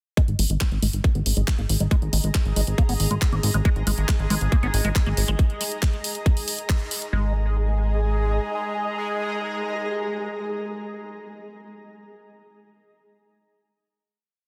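A tight, up-front four-on-the-floor electronic kick and a garage drum kit of handclaps and warm hi-hats drive this alien, densely mastered psychedelic trance piece, where a punchy, rolling sixteenth-note plucky analog bass sits beneath a squelchy liquid acid bass riff with a filter sweep, phaser, sidechain pumping and tape echo, while a blurred granular cloud pad drifts through slowly shifting chords and a bubbling stepped-filter texture enters at 3.7 s with bright, chorused sustained chords, both carrying on after the groove ends at 7.1 s into a final chord.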